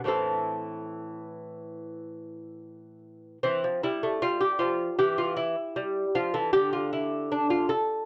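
A mellow, delicate solo lute, fingerpicked on nylon double strings with some octave-doubled courses, sits up front in this flowing, dance-like baroque-style classical piece, played with a loose rubato feel in four. The harmony moves from A minor to Fmaj7sus2 over E at 3.4 seconds before the chords fall away at 6.5 seconds. A moderate studio ambience surrounds the playing, and the sound carries the worn, warbly pitch drift of old cassette tape in this short cut from a longer piece.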